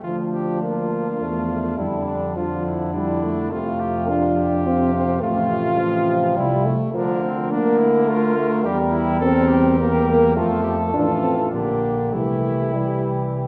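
Bathed in the wet reverb of a recital hall, this stately, noble classical brass quintet excerpt moves at 104 BPM in a rubato 3/4 in D minor: a warm trumpet with light vibrato carries the melody over a mellow, distant flugelhorn second line, while an up-front French horn and a brilliant trombone set in the background share the accompaniment, and a close-miked tuba anchors the bass.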